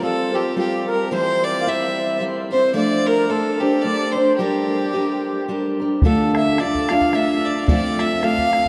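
Celtic folk in the form of a Celtic waltz, this short cut from a longer piece moves in 3/4 at 110 BPM with a lightly swung eighth-note feel and a driving, wild mood. A single bowed fiddle carries the melody up front, its tone bright and intense with a light vibrato. Alongside it, a reedy, mellow accordion plays a second line, its slow beating lending a gentle shimmer. A full-bodied picked steel-string dreadnought guitar sits up front with the accompaniment, moving through Fsus2, C/E, F6 and Gm before turning to Dm and F. At 6.0 seconds a tight, damped bodhran joins as the music shifts into its second section, carrying on to the close at 8.7 seconds, and the whole performance is bathed in a long, wet cathedral reverb that places it in a vast, echoing space.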